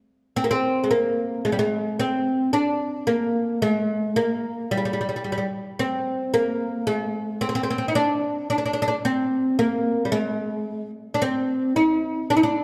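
Arabic music, stately and warm, moves at 111 BPM in 10/8 with a straight feel: a solo fretless oud, bright and woody with plectrum-plucked double strings, carries the melody up front from 0.4 s in this fragment of a longer piece, set in a recital hall's wet 1.5-second reverb within a dark production.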